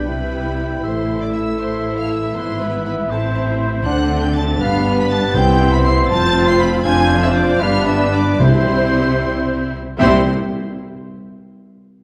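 In a 6/8 at 74-81 BPM counted in dotted quarters, this lively, cheerful classical-period movement in C major is cut from a longer piece and carried by a clear, focused violin section singing high above a second violin line, flute section, clear oboe and a very quiet clarinet. Beneath them a mellow bassoon and lush viola section supply accompaniment, a mellow horn section holds sustained chords, a distant trumpet adds stabs, and rich cellos with portamento and smooth double basses anchor the bass. Timpani struck with hard mallets enter at 5.3 seconds and return at 8.4 seconds as the harmony resolves back to C, all set in a moderate concert hall reverb with a dark, warm production.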